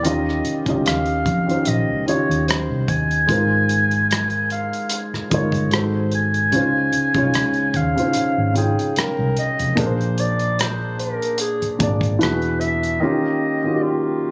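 Captured on a phone in a room with club reverb and compression, this sensual, unhurried neo-soul R&B excerpt at 74 BPM in Ab major swings lightly on the sixteenths as a breathy, subtoned clarinet with light vibrato carries the up-front melody over a dark, mellow concert grand, a round, foam-muted fingered electric bass, and a soft-topped soul kit of tight kick, hi-hat and rim click, with bass and drums stopping at 13.0 s while clarinet and piano ring on to 14.3 s.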